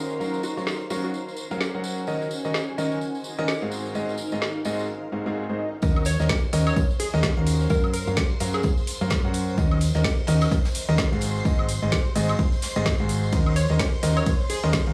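Bittersweet and energetic, this piano house excerpt at 128 BPM in Eb dorian sets a clear, smooth concert grand piano riff with tape echo over shimmering string-machine violins, a cloudy granular pad, a compressed tambourine, glassy wavetable pluck melodies and a woody, overdriven garage drum kit, then after a background swell drops at 5.8 seconds into a punchy analog kick, a dark, round hollow-body electric bass and very quiet jazz brushes, with the strings, piano and bass pumping against the kick in a dry, gritty hardware mix.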